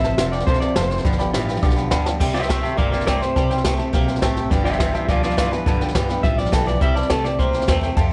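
An up-front jazz brush kit with a boomy kick and dark cymbals drives this rowdy, upbeat rockabilly fragment, where a slightly broken-up electric guitar through a small old amp carries the melody with tape echo, a scooped, twangy electric guitar plays a low riff bathed in lush chorus, a thumpy pizzicato upright bass, a full-bodied picked steel-string acoustic guitar and a woody upright piano sit in the background, and a drum fill at 2.1 seconds kicks off the second section in a small, natural-sounding room.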